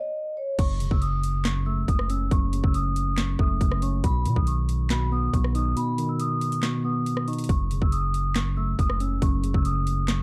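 Dark and menacing, this half-time trap excerpt at 139 BPM in F# dorian opens with a soft-mallet vibraphone alone, its ringing, airy tone carrying the melody before the rest of the band enters at 0.6 seconds. A clean, mellow tine electric piano with subtle chorus sits up front in accompaniment over a deep, sine-like 808-style bass that sustains and decays, while an overdriven electronic trap kit drives with a hard-clipped kick, sharp snare, metallic hats, handclaps, rim clicks and crash. The chords move from F#m to B and back to F#m, with a break from 5.8 to 7.5 seconds, all set in a dark, digital ambience.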